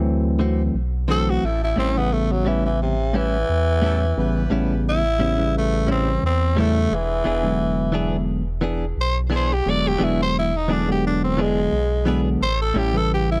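A dry, close studio sound in the 1970s manner frames this gritty, laid-back blues, cut from a longer piece and swinging gently in four. A growling tenor saxophone carries the melody up front from 1.1 seconds, its raspy, breathy tone touched with light vibrato. Beneath it, a bright tine electric piano comps cleanly while a deep, full sub bass doubled at the octave sits sustained and prominent. A direct-recorded electric guitar adds twangy, compressed picked stabs from 0.4 seconds, colored with spring reverb, and a brilliant horn section holds tight sustained chords in octaves in the background. The harmony moves from D7 to A7, then to E7, and settles back on A7 near 12.4 seconds.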